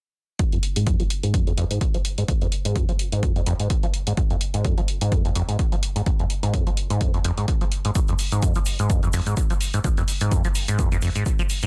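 Hypnotic and driving, this acid house excerpt from a longer piece sets a squelchy, resonant sawtooth bass riff, thickened by chorus, tube saturation, cassette tape and tape echo and run through a filter sweep, up front beside a punchy analog kick drum and an electronic hi-hat, all riding a swung 16th-note feel, while a grainy, close egg shaker joins quietly in the background at 8.0 seconds under light reverb and a dense, heavily limited master.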